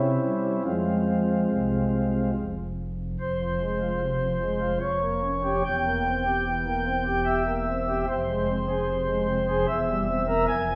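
Solemn and dark, this short chorale-style classical passage for solo pipe organ is cut from a longer piece and moves in an unhurried 3/4 at about 73 BPM, with uneven beats and a rubato feel. The organ plays alone from 0.0 to 10.8 seconds, spanning E1 to Ab5 on soft flute stops with a warm tone, a romantic voicing and a tremulant. Set in F minor and tuned to A4 = 441 Hz, the harmony opens on C before settling onto Fm, and a second section begins at 3.2 seconds, leaning through Gm7b5/F and C7/E before returning to Fm and closing on C7/E. The instrument sits up front in the mix, yet the listener seems placed further back in a recital hall whose wet reverb, with a 1.4-second decay, lends the sound a misty, spacious halo.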